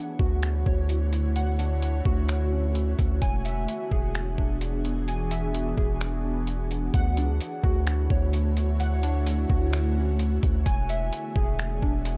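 A dry, gritty cassette-tape sound frames this blissful, dreamy slice of atmospheric cloud-rap, moving at 129 BPM in a half-time 4/4 feel in D lydian and drifting between Dmaj7 and E7. An ethereal, dark pad with ensemble chorus, built-in reverb, phaser and sidechain pumping holds sustained chords from the start, while warbling, nostalgic lo-fi synth keys play arpeggios through chorus, a low-pass filter and tape echo. At 0.2 seconds a deep, sine-toned 808-style bass and a muffled, pitched-down sampler drum kit of thumpy kick, hi-hat and finger snaps arrive up front.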